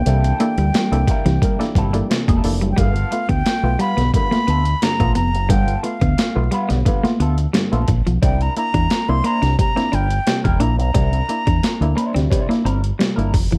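A breathy, close-miked silver concert flute carries the melody until 12.1 s over a gritty, strutting funk groove at 88 BPM, built on an overdriven, compressed breakbeat sampler-style drum kit with a thumpy kick, an up-front fingered electric bass through an envelope filter and tube saturation, a dark, clean electric guitar riff, a slightly broken-up electric guitar accompaniment with wah, and stringy, muted clav stabs through a combo amp, while a mellow, round tonewheel organ on a slow rotary speaker holds very quiet chords only until 2.7 s, set in a warm production with light reverb and vinyl crackle.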